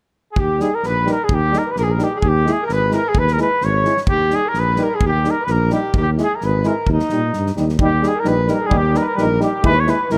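Virtuosic and restless, this Balkan brass band excerpt puts a nasal, straight-muted cornet up front on the melody from 0.3 seconds, joined by a clear alto saxophone on a second line, over a dark, soft-attacked tuba bass and an acoustic kit of tight kick and snare in a small room, while a distant, bright trombone with light vibrato and a mellow, vintage euphonium fill in the background from 0.6 seconds under light reverb.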